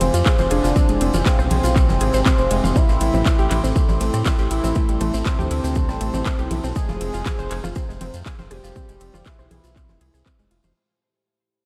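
A hypnotic, dark melodic techno excerpt at 120 BPM opens on a drop, with a moody analog pad, a lush detuned unison pluck arpeggio with delay, a round, deep bass up front, a very quiet overtone-sweeping drone, a metallic-hatted house kit with congas, claps, ride and rim, a faint polished studio kit with snare and shaker, and grainy distant maracas, before a punchy tape-warm electronic kick arrives at 0.3 s and a fat, mellow, wave-folded sawtooth lead with vibrato and delay enters at 0.5 s, the sidechain-pumped synths moving through Fm and Am7 under light reverb as the whole fades out from 2.8 s.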